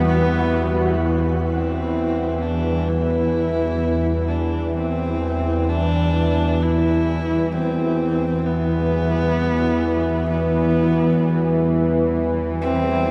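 A cavernous cathedral reverb surrounds this unsettling ambient excerpt, where a tense, string-like drone sits up front beneath a very quiet, evolving pad of full-bodied sustained chords. A breathy, wind-like noise texture hovers in the background only until 1.0 s, when a husky horsehead fiddle, sounding from the start and bowed by one player with vibrato and portamento, begins fading in, its focused line trailed by shimmer reverb and tape echo.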